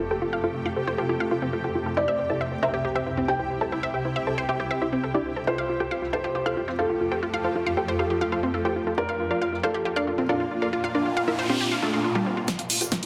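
Euphoric and uplifting, this short uplifting trance passage in straight 4/4 opens on an electronic impact and unfolds over chords moving from Fadd9 to C, back to Fadd9, then Bb. A lush, detuned unison pluck carries the melody with subtle chorus, dub echo and sidechain pumping. Beneath it, a round analog pluck spins arpeggios through tape echo, while a shimmering, ethereal pad holds sustained chords with a granular octave-up sheen, and both synth plucks move through long filter sweeps up to 12.5 seconds. A soft, felt-muted upright piano adds an intimate second line with audible action noise and tape echo, ending at 12.4 seconds. A noise sweep enters at 11.0 seconds, and at 12.5 a drum fill bursts in: a punchy, tape-tinged drum-machine snare and hi-hat up front, a background kick, a grainy egg shaker and a riser, all in a moderate digital room on a dense, heavily limited master.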